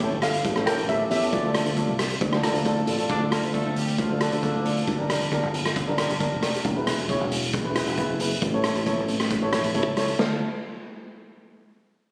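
Driving and intense, this calypso excerpt in D minor moves at 135 BPM in a straight 4/4, with an airy lead steel pan carrying the melody through plate reverb and digital delay until 2.8 seconds, while a darker, smooth double-seconds pan keeps up the accompaniment. Growly, punchy fingered electric bass sits under the pans alongside a saturated, gritty drum kit with a rolled-off top that sits up front. A vintage-sounding horn section with light vibrato and octave doubling adds a second line from 3.1 to 5.1 seconds, returning briefly at 10.2 seconds. The harmony moves from A7 to Dm, then through Gm7, E and A before landing back on Dm at 10.2 seconds, all captured with the roomy feel of a phone recording in a small space.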